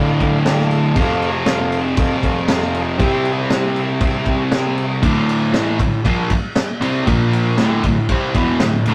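A rough rehearsal-room recording with tube saturation and a tight, wet booth ambience frames this raw, menacing garage rock clip in D minor, moving at 118 BPM in a straight 4/4. A bright, double-tracked fuzz guitar drives an up-front riff throughout, joined at 0.2 s by a vintage kit with a punchy kick, high-tuned snare and dark cymbals. A mellow, clean combo organ with light vibrato holds sustained chords over Dm, F and C, opening with a short fill, before dropping out at 4.9 s as the guitar and drums push through Dm, Bb5 and D5.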